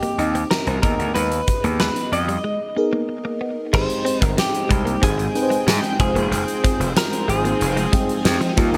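Light reverb and a small-room ambience frame this short cut from a longer 1980s-style pop piece, romantic and uplifting at 93 BPM in straight 4/4. Up front, a huge arena drum kit with gated reverb, a fat snare and a punchy kick sits beside a gritty, overdriven slap bass. A lush, dreamy FM electric piano with a soft pad layer, chorus and phaser carries the accompaniment under a compressed clean guitar melody, while a second bright, picked clean guitar plays a riff through analog chorus and digital delay; after a break from 2.4 s, mellow synth brass stabs enter at 3.7 s as the harmony moves to Abmaj7, and a shimmering, ethereal pad joins at 4.9 s.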